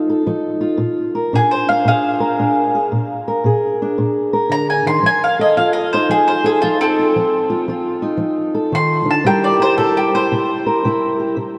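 A fingerpicked steel-string acoustic guitar opens this swaggering, laid-back acoustic country blues excerpt at 114 BPM with a swung feel, its finger squeaks audible as it moves through F7, Bb7 and C7 chords. At 1.4 seconds a woody, double-strung mandolin enters up front to carry the melody over the guitar's accompaniment. Both sit in a huge, wet ambient reverb that places the listener further back in the room.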